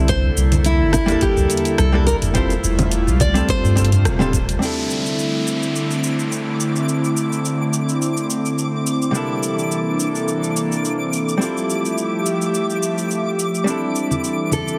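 At 106 BPM in 4/4 with a lightly swung sixteenth-note feel, this smooth, warm sunset chillout excerpt in C major opens with a knocking electronic kick, a smooth R&B kit of metallic hats, cabasa, rim click and toms, soft-handed band-limited congas and a round sine sub bass. A dark, clean hollow-body jazz guitar and an airy, breathy pad with chorus hold the chords from C13 through Fmaj9 and G9sus4, while a bright fingerpicked nylon-string guitar with finger squeak and tape echo carries the melody, and the band hits an accent at 4.0 seconds. By 4.6 seconds the kick, sub bass and nylon-string guitar have dropped away, and a downlifter passes as a twinkling granular texture with octave-up shimmer enters at 5.4 seconds, all under a heavily compressed, radio-like sound with light reverb.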